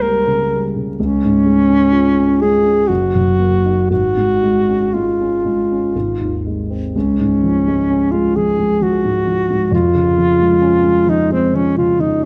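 Lyrical and tender, this short passage from a longer piece is a romantic classical duo for alto saxophone and grand piano, moving in a gentle three-beat metre with a freely breathing rubato. The alto saxophone carries the melody throughout, its classical-style tone warm, smooth at the top and shaded with vibrato as it sits up front as the solo voice. The grand piano accompanies beneath it for the whole passage, reaching from deep bass notes up into the saxophone's middle register, and it too sits close and present. The harmony opens on a diminished seventh chord before settling into gentle, slash-chord colours, and the opening phrase is restated at 6.9 s. Light reverb and close, detailed microphones give the pair an intimate, finely etched sound.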